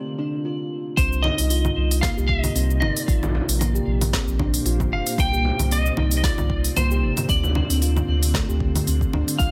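A steel tongue drum opens at 0.2 s with bright, ringing arpeggios through digital delay. At 1.0 s a clean lap steel guitar, played with fingerpicks and slide, takes up the melody, while a deep electronic kick, a deep house kit of congas, shaker, woody snare and smooth hats, and a round sine sub bass with tube saturation and sidechain pumping set a lightly swung 114 BPM groove in C dorian. An ethereal, detuned pad drifts in from 2.0 s with ensemble chorus and its own reverb, and a distant frame drum sits in the background of this mystical organic downtempo excerpt under a dense, heavily limited master.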